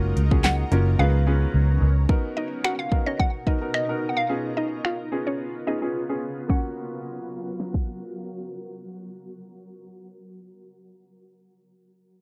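A dry, close 1970s-style studio sound with a low-pass filter frames this upbeat, euphoric dance-pop excerpt at 109 BPM in F# major, where a hollow, bouncy square-wave pluck carries the melody over a clear, worn concert grand piano and a shimmering, ethereal pad that both pump with the sidechain, a dark, foam-muted fingered electric bass heard only briefly at the start, punchy overdriven pop drums with fat snare, metallic hats, handclaps and finger snaps that fall silent from 1.0 to 2.1 s, a barely audible tambourine, and a woody FM mallet pluck that joins at 2.4 s, while a filter sweep and a short silent gap lead into the closing F# chord.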